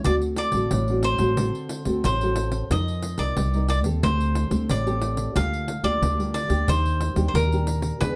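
A dark, warm production with light reverb frames this short passage cut from a longer samba and choro piece, moving at 90 BPM in a straight 4/4 with a yearning, bittersweet mood over harmony that drifts from D7 toward Gm7/D and Ebmaj7. A jingly pandeiro, close and dry and struck with hard hands, opens at 0.0 seconds before the others join at 0.1 seconds. A crisp, picked cavaquinho carries the melody up front, a thumb-plucked classical nylon-string guitar with fresh strings supplies the accompaniment, and a woody pizzicato upright bass on steel strings sits prominently beneath.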